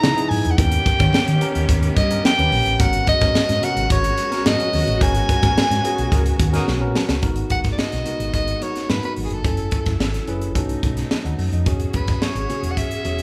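A bright, forceful soprano saxophone carries the melody up front from the first moment, its vibrato-laden pop-style tone smoothed at the top, over a tight funk drum kit with a punchy kick and high-tuned snare. This is polished 1980s jazz-funk pop in G# minor at 108 BPM, straight 4/4, cut from a longer piece, with a bittersweet, nocturnal mood. A worn, slightly out-of-tune tine electric piano supplies clean, direct accompaniment, while a dark, round hollow-body electric bass holds the low end and a clear, bowed studio string section sustains chords in the background, with very quiet, vintage-sounding congas played with hard hands. The band hits a shared accent from 5.0 seconds, and a mellow horn section with soft attack and octave doubling slips in a brief second line at 6.1 seconds before a drum fill leads into the second section at 7.2 seconds. Chords such as C#m7, G#m11, F#m7, B9 and E69 give the harmony a lush, jazzy colour, and a moderate large-studio reverb makes the group sound like a band playing live together in one room.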